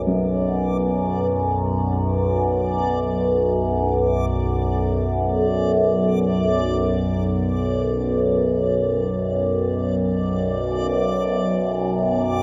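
Desolate and cavernous, this 12.4-second dark ambient drone excerpt in free time sits on B minor, with an up-front, resonant sawtooth-and-sine drone whose overtones move through chorus and phaser, a bright, detuned, reversed granular texture fading in high above it, and a dark, boxy baby grand piano tracing short-sustained arpeggios in the background through dub echo, all set in an echo-heavy mix with a wet spring reverb.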